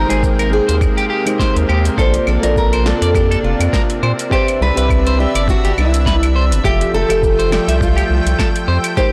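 A blown-out, overdriven mix with light reverb frames this blissful, smooth sunset chillout excerpt at 103 BPM, swung in 4/4 over drifting Abmaj9, Bbmaj9, Cmaj9 and Fmaj9 chords. A bright, fingerpicked nylon-string guitar carries the melody through digital delay, while a dark, soft FM electric piano with chorus, phaser and delay and a thick, detuned unison pad with chorus fill the harmony. A deep, wave-folded analog bass sits up front beside a gritty, thumpy electronic kick, as a twangy, slightly broken-up electric guitar picks delayed arpeggios and a deep house kit adds a punchy snare, metallic hats, claves and shaker.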